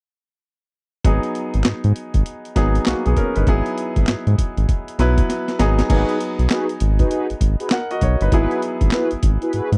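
Bouncy and slick, this excerpt of new jack swing R&B moves at 99 BPM in 4/4 with a 62% swing on the sixteenths, sitting in G# minor. A gritty, compressed sampler-style drum kit with a thumpy kick, high-tuned snare, handclaps, hi-hat and crash runs from 1.0 s alongside a clear, polished concert grand piano accompanying over G#m7 and Eadd9/G#. A round, deep analog bass, sawtooth and sine blended with a fast attack and sustained notes, sits up front from 1.1 s. A drum fill at 5.3 s leads into the second section, where mellow synth brass stabs enter at 5.9 s, brassy and detuned with a filter sweep and chorus. The sound is dry and close, like a 1970s-style studio recording with little reverb, and the tape-warm drums give it a vintage warmth.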